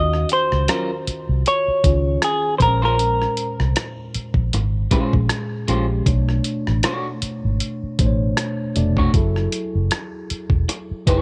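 A dark, clean semi-hollow electric guitar leads the opening of this late-night R&B and neo-soul excerpt up front, playing a fingered hollow-body melody that stops at 3.6 seconds. Beneath it, a round, punchy, foam-muted electric bass sits forward in the mix with a dark, amped tone, while a dusty sampler-style drum kit adds a thumpy kick, hi-hat and rim click, sounding compressed and gritty as if re-recorded in a small room. A mellow tine electric piano carries the accompaniment throughout, worn, slightly out of tune and lightly overdriven through a combo amp with lush chorus. From 0.7 seconds, a second electric guitar picks a slightly broken-up, compressed line through a small old amp. The smooth groove swings gently on the sixteenths in 4/4 and moves through Ebm9, Bbm9, Bm9 and Gbm9 in a dry, close-sounding room.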